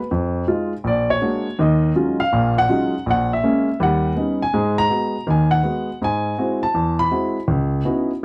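A close, intimate studio sound frames this short solo jazz piece, with the grand piano set up front in a moderate room reverb and its action noise audible beneath the notes. The piano alone carries everything, its natural, warm tone spanning Bb1 to B5 across a cool, late-night mood. The tempo is a brisk 163 BPM in 4/4 with a swung eighth-note feel. The harmony moves through altered dominants and minor chords, Fm7, Bb7alt and Ebm11, settling in Eb minor before shifting to G# minor at 4.5 s, where G#m7, G#7alt and C#m11 follow. Cut from a longer performance, the passage lasts just over 8 seconds.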